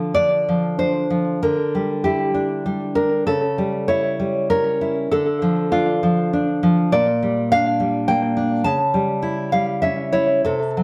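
A fingerpicked nylon-string guitar plays alone and up front in this passionate, wistful romantic classical piece, its deep, warm acoustic tone caught by close, detailed microphones and touched by a slapback echo. The playing moves in a rubato triple metre with uneven beats, circling through minor harmonies that keep returning to a dominant seventh chord, heard at 3.3 and 8.7 seconds. Light reverb surrounds this brief passage, which is cut from a longer piece.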